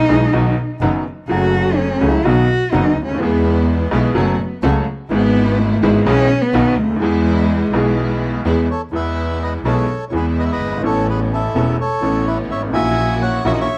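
A nostalgic, passionate tango in E major at 126 BPM, taken from a longer piece and played with a rubato feel in a dry, close 1970s-style studio sound, opens with a warm cello solo, bowed with vibrato and portamento, over bright, woody upright piano, a rich, lush string section playing stabs, and a clear, focused bowed double bass. The cello steps away at 8.4 seconds, and at 8.7 seconds a reedy, dark bandoneon takes over the melody as the harmony moves through Aadd9 to F#7/A#.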